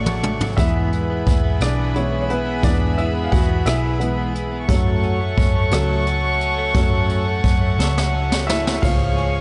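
The sound is close and softly lit, with light reverb and a small-room ambience, its top end rolled off for a dusky finish. This tender, romantic pop ballad in six-eight moves at 58 BPM, a cut from a longer piece that drifts from D to E, then to F#m at 4.7 s, landing on C# at 8.8 s. A polished grand piano with slapback echo carries the lead as a solo through 8.8 s, while a bowed string section plays sustained chords, soft-attacked, pure and distant, floating sul tasto above it. In the background, a bright, direct-recorded clean electric guitar picks compressed arpeggios dressed in lush chorus, tape echo and slapback. A foam-muted, fingered electric bass adds a round, dark low end, and an up-front jazz brush kit, with its boomy kick, high-tuned snare and dark cymbals, opens with a fill and adds another from 7.8 s.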